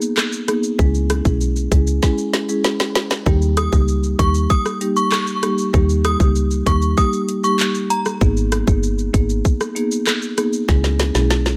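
Dancehall with a hypnotic, tough mood, built on a tight, overdriven electronic drum kit of kick, woody snare, metallic hats, rim click, shaker and handclaps with fills at 2.0 and 10.7 seconds, a round, soft-mallet marimba on rosewood bars, a mellow FM bass entering at 0.8 seconds, and a chiming, inharmonic synth melody with ensemble chorus and digital delay ringing from 3.6 to 8.0 seconds, all in a dry mix cut from a longer piece.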